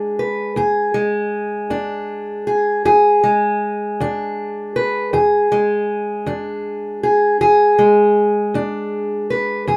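A slow, straight-feeling 12/8 pulse carries this laid-back, gritty blues excerpt, which rests on a single E7 chord throughout. A lone fingerpicked steel-string parlour guitar plays up front from 0.0 to 9.8 s, its old strings giving a woody, boxy tone across a range from low E2 up to B4. A short, wet booth ambience surrounds the guitar.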